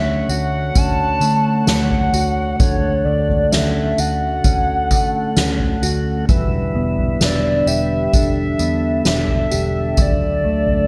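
A hollow, woody clarinet-like synth lead sings a floating melody through chorus, phaser and digital delay over a flute-like tonewheel organ turning on a slow rotary speaker, dark clean guitar arpeggios, and a round, foam-muted bass, while a soft-mallet drum kit with a boomy kick, fat snare, tambourine and toms under gated reverb joins at 0.3 seconds in this blissful, bright 1980s-style dream pop excerpt at 65 BPM in D major, moving from Dmaj7 to Em7 and settling on Dadd9.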